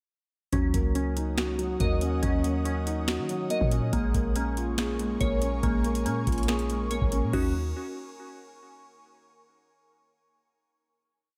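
Brooding, melancholic trap-style hip hop in Eb minor at 141 BPM with a half-time feel, where a booming analog drum machine with a deep kick, crisp snap-layered snare and fast metallic hi-hat rolls sits up front beside a boomy 808-style bass sliding under the kick, while a felt-muted upright piano with audible action noise loops a rising eighth-note arpeggio, glassy digital keys repeat a chorused, delayed quarter-note pattern, and an ethereal, detuned pad enters at 1.3 seconds, moving from Ebm7 to Bbm7 before returning to Ebm7 for a final chord at 7.3 seconds.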